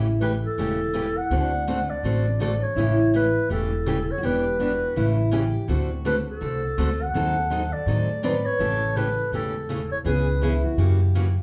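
Heard from further back in a club-like room with a wet reverb, this swinging, charming cut from a longer jazz manouche piece moves at 165 BPM in A mixolydian, with a dark clarinet carrying the melody from 0.2 s in a breathy subtone with vibrato and scooped notes, a woody, thumpy pizzicato upright bass on gut strings up front, a bright picked steel-string guitar comping, and a full-bodied second picked guitar with audible finger squeak playing a supporting line over changes that pass through A7, D7 and D#dim7.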